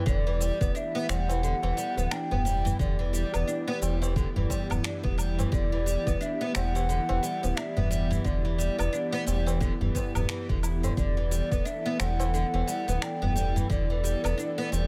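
A relaxed 88 BPM groove in 4/4 with a 16th-note swing of 59% drives this mystical organic downtempo piece in E minor, cut from a longer work and resting on a single Em7 chord. An electronic kick drum, deep and tape-warm, anchors the beat until 13.9 seconds, while a layered, filtered set of electronic cabasa, finger snaps and woodblock sits softly beneath. A low-tuned acoustic tabla with a short ring joins at 0.4 seconds from the background of a small room. Up front, a round, dark analog bass blends sawtooth and sine tones and pumps against the kick, while a soft, warbling vintage pad with a detuned noise layer holds slow-attack chords through chorus and its own pumping. A bright, woody fretless oud plucks arpeggios with a plectrum on double strings, and a bamboo bansuri sings a mellow, vibrato-laden melody with a crisp attack and rolled-off highs, both carried by tape echo in a studio ambience.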